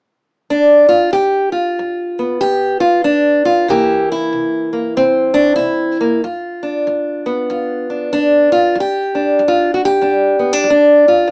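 A loose swing on the eighth notes in 4/4 gives this short acoustic country blues excerpt a swaggering, laid-back strut. A lone fingerpicked archtop guitar comes in at 0.5 s, up front with a woody, boxy tone and the dull bite of old strings, moving from G7 to C7 and back to G7. Light reverb and a small-speaker, one-room live sound give the recording an intimate, old-time character.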